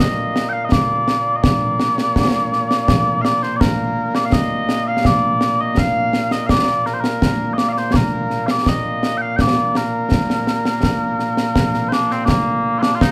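Ceremonial and stirring, this fragment of Scottish pipe music in a straight three-beat metre sets mellow, sweet small bagpipes up front with a continuous, vibrato-touched solo melody, joined at 0.4 seconds by close, acoustic concert snare and bass drums with bright cymbals, all heard as a band playing live in one room filled with a moderate large-studio reverb.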